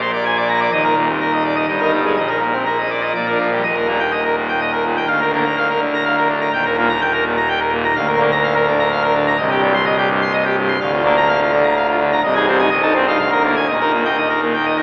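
A solo pipe organ opens at once on full registration, its mixtures and baroque voicing giving a brilliant, majestic sound that spans from C1 to C6. This is a classical organ toccata in Eb major, moving at 125 BPM in a straight 3/4, and it is cut from a longer piece. A short opening passage sets the key before a new section begins at 3.6 seconds, where the harmony moves between Eb and Bb/D with a turn to Cm. The pipes speak with a distinct chiff and sit up front, while a wet church reverb carries each chord into a long, resonant tail. The whole recording has an AM radio tone, and it closes on a cadence through Ab/C, F7/C and Bb7/D that settles on Eb at 13.7 seconds, running to 14.8 seconds.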